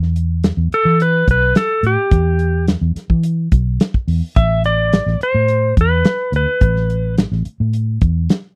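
Straight-eighth soul blues at 107 BPM with a smoky, soulful mood, this short cut from a longer piece sets a dark, round, foam-muted fingered electric bass against a soul drum kit with a tight kick and a rolled-off top, both up front in a dry, close 1970s-style studio sound, while a clean, warm lap steel guitar enters at 0.7 s to carry the melody with slide and volume swells as the harmony arrives on an Asus2 chord at 4.4 s.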